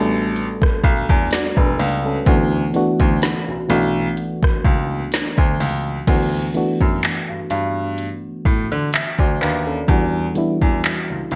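Light reverb and lossy compression artefacts frame this smooth, romantic contemporary R&B excerpt, with a gentle sixteenth-note swing and chords moving from Em11 through D6 and D69 to Em9. A mellow FM electric piano with a fast attack, decaying tones and a noise layer carries the accompaniment, while a bright, brilliant baby grand piano plays the bass line up front, intimate and polished, with audible action noise. From 0.4 seconds an electronic, produced drum kit joins, close and tape-tinged in a large room, with a soft kick, woody snare and rim click, smooth hi-hats, handclaps and a crash cymbal.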